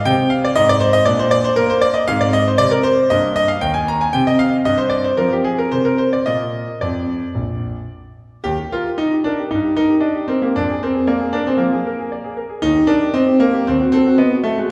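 A rubato 4/4 pulse around 115 BPM carries this playful, elegant classical-period sonatina fragment in Eb major, cut from a longer piece. A solo concert grand plays throughout, clear and open with a deep bass, spanning Bb1 to Bb5, and its opening phrase returns at 8.5 s. The piano sits in a wet recital hall with a 1.6-second reverb tail, heard from further back in the room.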